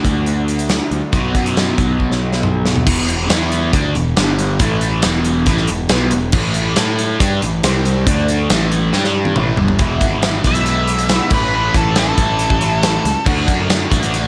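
A straight 4/4 groove at 138 BPM drives this confident, swaggering classic rock clip, cut from a longer piece, where a punchy, mid-forward big-room drum kit with crash, hi-hat, kick, snare and toms rolls through fills at 2.0 and 8.9 seconds beneath a crunchy, double-tracked overdriven guitar riff treated with phaser and a round fuzz bass, until a dark octave-fuzz lead guitar cuts in at 10.5 seconds for a short solo, all recorded fairly dry.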